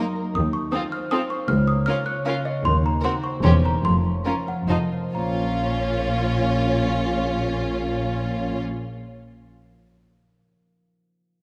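In a straight 3/4 lilt at 132-158 BPM, this sneaky, quirky film cue in Bb minor has a playful, whimsical step that eases back between 2.1 and 5.1 seconds, just before the phrase settles onto Bb minor. A trough xylophone played with soft rubber mallets carries the tune in a woody, dry, airy voice. A clear, focused violin section also plays melody from the background, while a rich second violin line and an even, smooth-topped viola section fill the middle with bowed vibrato. Cellos and a double bass section, the latter entering at 0.3 seconds, anchor the low end, with the basses sounding especially focused. A bright concert harp threads fingerpicked arpeggios through the texture and rings on until 9.5 seconds, all set in the generous bloom of a scoring stage, in a short piece cut from a longer work.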